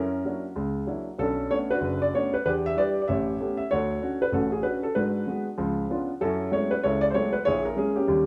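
A woody upright piano opens at once and carries this brief, smoky jazz fragment by itself from start to finish, spanning the low bass register up into its upper middle. The playing has a lively swung eighth-note lilt, and the moody harmony moves through rich, dark-tinged seventh, ninth and eleventh chords, with altered dominant colors and half-diminished turns adding tension. The instrument sits up front with a natural, short-sustaining tone, so each note speaks clearly and fades quickly. A moderate stone-room reverb gives the sound a live, enclosed ambience, as if heard in the same room as the player. Cut from a longer piece, the passage runs just over 8 seconds.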